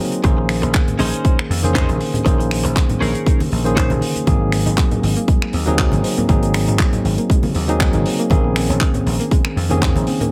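A bell-like tine electric piano with tape echo and a clean, direct-recorded electric guitar riff coated in analog chorus open this groovy, sensual nu-disco excerpt in Bb minor at 119 BPM, with a gentle swing on the 16ths. A dry 70s kit of finger snaps, handclaps and hi-hat comes in at 0.1 seconds, and a punchy, up-front electronic kick, an amped vintage slap bass, and distant, very quiet congas follow at 0.2 seconds, while the chords move from Bbm11 to Ab9 and back. The guitar stops at 4.1 seconds, and a soft, round, mellow pluck then adds very quiet arpeggios from 4.3 seconds, all set in a small room ambience.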